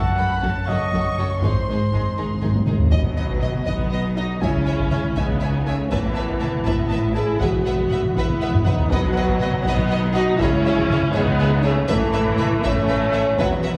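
Mellow French horn chords and dark, distant trumpet stabs open this relentless, dramatic cut from an epic orchestral film score in 6/8, the trumpets falling away by 2.2 seconds while a lush, vibrato-rich violin melody sits in the background above a close, expressive second violin line with portamento, smooth-topped chamber viola accompaniment, a bowed cello bass and a woody double bass, as a close taiko ensemble with heavy sticks drives throughout, calf-headed timpani fill from 1.4 seconds, and a huge, bright but very quiet sub drop lands at 3.0 seconds, all set back in a wet recital hall.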